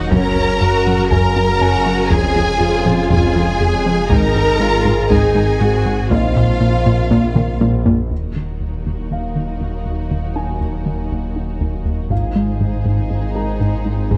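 Lush bowed strings, with vibrato-rich violins carrying the melody over violas, cellos and a double bass section, open this brooding, futuristic hybrid orchestral and electronic film cue alongside a deep sine sub bass, very quiet trombones and a soft felt-muted upright piano with tape echo; mellow French horns, a punchy sawtooth analog bass riff and a very quiet taiko ensemble join almost at once, the taiko dropping out at 9.1 seconds and returning at 12.1 seconds, all within a moderate scoring-stage reverb.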